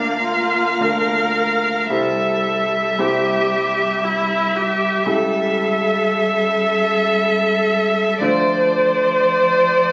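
A tender, serene slow romantic movement for piano quartet, cut from a longer piece, opens with a single focused, rich violin singing the bowed melody with vibrato, carried over a viola accompaniment and a clear, vintage-toned grand piano with long sustain, while a distant cello adds an expressive second line with portamento, all flowing in a rubato 3/4 through Bb/D, C, A7/C# and Dm, tuned to A4 = 438 Hz and heard through a phone in a concert hall with moderate reverb.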